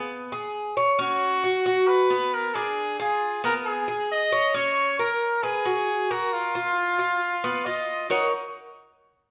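A clear, vintage-toned trumpet carries the melody up front with light vibrato and a pop-style phrasing, while a picked Cuban tres, its doubled metallic strings ringing with some octave doubling, plays arpeggios alongside it from 0.0 to 8.3 s. This short cut from a longer Latin piece moves at 135 BPM in Eb minor with a warm, danceable feel, shifting through colorful chords such as Bmmaj7 and Bdim7 before settling on Eb5 near 8.1 s. The band plays live in a stone room with noticeable reverb, and the sound is soft at the top end.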